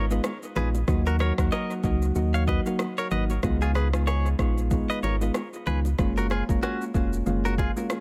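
A deep, full sub bass doubled at the octave sits up front, its sine-like tone carrying the low end of this romantic, joyful afrobeats fragment cut from a longer piece. Round, gentle electric-piano-like synth keys share the foreground with a dark, chorused shimmer and tape echo, laying down chords that move from a rootless Db7 through Ebm and back to Db7 before settling on Gbmaj7 near 6.0 seconds. Over them a bright, twangy clean electric guitar, recorded direct and compressed, picks out a riff touched with tape echo until 7.7 seconds. An electronic, produced afro-pop drum kit with a deep kick, rim click and shaker, also echoed, gives the groove its lilting swing, while very quiet bongos and congas, close and dry with hard hands, add crisp acoustic detail underneath. The mix is echo-heavy with light reverb.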